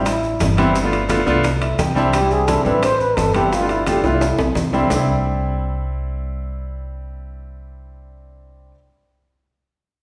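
A sunny, danceable slice of Afro-Cuban jazz at 173 BPM in C major, where a warm, close-miked trombone takes a solo with vibrato, soft attacks and scooped notes over a clear, polished concert grand piano that adds a brief fill at 1.4 seconds, while a woody, thumpy upright bass with gut strings sits up front. Ringing low-tuned congas and metal-shell timbales sit in the background, joined by tight, high-tuned bongos and grainy, distant maracas, with a drum fill closing the opening stretch before the percussion stops at 5.0 seconds. The trombone drops out at 4.5 seconds, leaving piano and bass to carry on in a church-like hall reverb.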